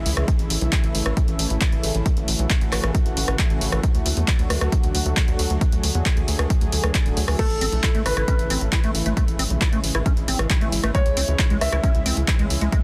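Uplifting and soaring, this excerpt of uplifting trance moves at 135 BPM in A major, with a lush, detuned unison pad holding chorused chords that pump against the sidechain over a tight, sawtooth-and-square sequencer bass, a tape-warm analog drum machine of crash, handclaps, hi-hat and rim click, and a punchy electronic kick that comes in at 0.3 seconds. At 7.4 seconds a dark, mellow concert grand piano adds a second line through tape echo, while a squelchy, resonant acid bass joins with filter-swept arpeggios under subtle chorus, cassette tape coloring and delay. The chords move from A to D, back to A and on to C#m in a dense, heavily limited modern master with digital ambience.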